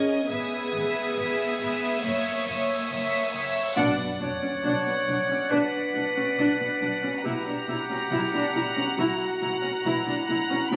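A slow, straight 4/4 pulse at 69 BPM carries this tense, mysterious suspense cue, cut from a longer film score, where a soft-attack violin section sings the sul tasto melody up front over a distant, rich second violin line, intimate viola and cello sections with light vibrato, and a dark, woody double bass section. A high chamber violin texture sits above at the start, while an electronic riser builds from 0.5 s into a sub-drop impact at 3.8 s, where the harmony settles into B harmonic minor and a clear, vintage-toned solo clarinet enters at 4.2 s. The sound carries a moderate scoring-stage reverb, heard as if captured on a phone in the room, with club ambience, compression and a faint mains hum.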